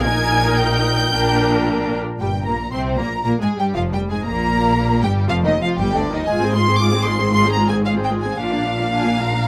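Up front in the mix, a second violin line sings with vibrato and portamento, carrying an expressive, bowed voice through this brief cut from a quick classical-period movement for string orchestra. Above it, the violin melody ranges high with a soft attack and a lush, rich sheen, though it sits lower in level than the line beneath it. The viola section fills the middle with focused, smooth-topped accompaniment, while the cellos lend a warm, bowed depth and the double basses anchor the bottom with an even, smooth tone. The mood is restless and stormy, the rubato feel pushing and pulling against the 4/4 pulse as the harmony moves from Eb/Bb through Gmadd11 and Fm/Ab before settling on Bb. All five sections play throughout the 9.5 seconds, a new section beginning at 2.2 seconds, and a light reverb gives the ensemble a sense of space.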